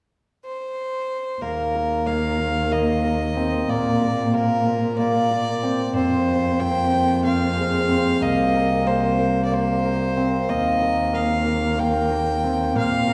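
Contemporary chamber music in a restless yet hopeful 7/8 at 185 BPM in Eb major, cut from a longer piece, where a clear, biting bowed violin with an airy, nasal edge opens the melody alone at 0.4 s before a shimmering, ringing hammered dulcimer arpeggiates up front and a smooth cello with vibrato holds the bass from 1.4 s through Ebsus2, Bb, Fm and Cm7, all set back in a wet recital hall.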